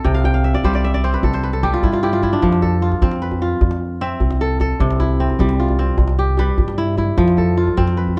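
West African traditional string music in a flowing, joyful 12/8 at 101 BPM in F lydian, this short excerpt is led by an up-front, ringing, crisp kora playing fingerpicked arpeggios, with a fill from 0.1 to 2.4 seconds. A medium-tuned djembe with a live-room sound supplies percussion while a woody, growly pizzicato upright bass on steel strings holds the low end, the harmony moving from C to F at 7.2 seconds. The production is dark and warm, with little reverb and some lossy compression artefacts.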